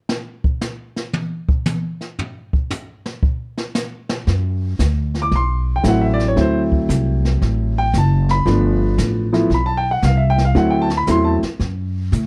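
This jazz piano trio excerpt has a playful, swinging feel in 4/4. A brushed drum kit opens alone, its medium-tuned snare, hi-hat, toms and boomy kick sounding distant and roomy, as if set in a small room, with a rolled-off top end. At 4.3 seconds a pizzicato upright bass enters, woody, growly and thumpy on steel strings, as the harmony settles on D7 before moving to G7 and back. A baby grand piano joins at 5.2 seconds with a natural, up-front melody and carries it to 11.4 seconds. Light reverb and a dark, warm production round out the trio's sound.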